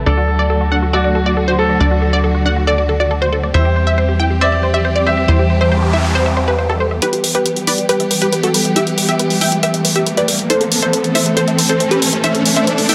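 Lightly reverberant with a digital ambience and a low-pass filtered sheen, this driving, emotional uplifting trance excerpt at 138 BPM in E minor sets bowed, vibrato-rich symphonic strings up front beneath a lush unison pluck melody sitting in the background and a full-bodied, detuned pluck arpeggio, both carrying tape echo, while a clear baby grand piano adds a polished, echoing second line until 5.6 s, a tight, nasal sequencer bass punches through until 7.0 s, a low-pass filtered electronic hi-hat and tambourine keep straight 4/4 time, and an electronic noise sweep from 5.5 s leads into a riser-driven build-up over chords of D, C/E, Em and Am.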